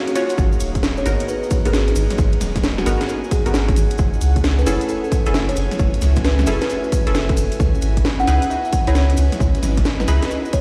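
A woody, ringing kalimba carries the melody through tape echo over a late-night, skippy two-step UK garage groove at 133 BPM in G# minor, where an overdriven punchy electronic kick and a soft, round dub sub bass arrive at 0.4 seconds up front, a house kit's cracking snare and hi-hat play alongside a grainy background cabasa, detuned chorused chord stabs pluck through G#m7, F#m7 and C#m7, and a breathy pad and an ethereal, wave-folded pad pump behind it all, the whole cut sounding like a big system playing in a bare stone room with vinyl crackle.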